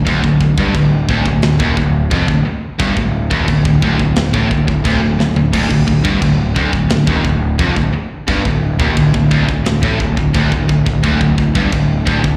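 Dark and heavy, this excerpt of heavy metal in D minor moves at a straight 87 BPM in 4/4, cut from a longer piece and lasting about 12.4 seconds. Up front sits a growly, fuzz-laden picked electric bass, bright and overdriven, carrying the low end from D1 to A1. Three guitars play the riff between D2 and A2: a bright, overdriven electric guitar and a scooped, high-gain distorted guitar sit in the background with slapback echo, while a double-tracked fuzz guitar adds a very quiet, warmer layer beneath them. A tight metal drum kit enters at 0.1 seconds, its mid-forward, rolled-off sound built from a medium-tuned snare, tight kick, toms, crash and china cymbals, with a short fill at 5.2 seconds. The sound carries the feel of a live gig heard through a venue's PA with recital hall reverb, though the parts themselves stay fairly dry.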